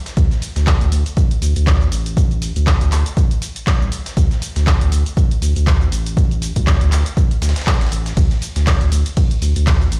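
Trippy and playful, this excerpt of acid house moves at 120 BPM in 4/4 with a 57% swing on the sixteenths. From 0.1 seconds, an analog drum machine, re-recorded in a small room, supplies handclaps, hi-hat, ride cymbal and shaker. Beneath it, a very quiet, gritty sampler-style kit adds hi-hat and a fat, compressed snare, re-recorded in a large room. A punchy analog kick sits up front from 0.2 seconds, arriving together with a deep, thick sub bass with a triangle tone, tube saturation and sidechain pumping, ranging from A1 to D2 with a fast attack and sustained notes. The mix carries little reverb overall, yet it sounds as if played on a big sound system in a bare stone room.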